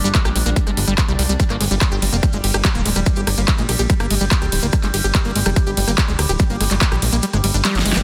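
Psychedelic trance at 144 BPM in G phrygian, hypnotic and heady, this short cut from a longer piece is driven by an overdriven, punchy electronic kick and a big-room dance kit with a huge snare, metallic hats, handclaps, ride and rim click. A plucky analog bass with ring modulation sits up front beneath a squelchy, resonant liquid acid riff carrying chorus and dub echo, while a background drone of moving overtones, with phaser, chorus and sidechain pumping, sits alongside grainy maracas. The kick drops out at 7.2 seconds, and a drum fill arrives at 7.6 seconds in a dense, heavily limited mix with light digital ambience.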